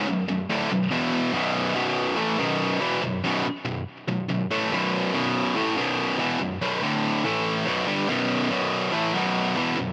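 A high-gain electric guitar opens this dark, heavy metal excerpt at 0.0 seconds, played alone, picked and double-tracked, its bright, distorted tone sitting up front with delay. The first moments fall into a half-time feel over B minor before moving through E5 and back to B5. At 1.8 seconds the piece shifts into a new section at the full 142 BPM in straight 4/4, holding on B5 before a D5 to A5 turn that lands back on B5. The guitar ranges from B1 up to A3, keeping the part low and weighty. A digital ambience surrounds the playing until the cut at 9.9 seconds.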